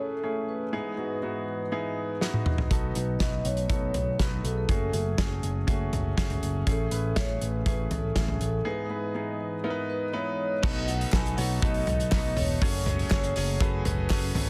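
Piano-driven pop at 121 BPM in B mixolydian, uplifting and hopeful, where a mellow, ringing vibraphone carries the melody over a clear, intimate grand piano with audible action noise and a very quiet shimmering retro pad, before a drum fill at 2.2 seconds brings in a loose indie kit with a fat snare and punchy kick, joined by punchy picked bass, and from 10.6 seconds a twangy clean guitar riff with lush chorus sits in the background, joined at 11.1 seconds by very quiet crisp handclaps, all in a dense, heavily limited modern master cut from a longer piece.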